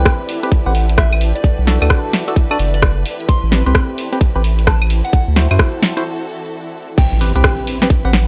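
Opening on a soft FM synth bell melody, hollow chorused and phased organ stabs, lush bowed violin chords with vibrato, a cloudy granular pad and a thick, saturated, pumping sub bass, this late-night, skippy two-step UK garage excerpt at 130 BPM in A dorian rides a swung groove of tight electronic kick, cracking snare, hi-hat, rim click, claves, shaker and crash up front through a dry, gritty hardware sound, with the pad ending at 6.1 seconds before a very quiet electronic impact marks the drop at 7.0 seconds.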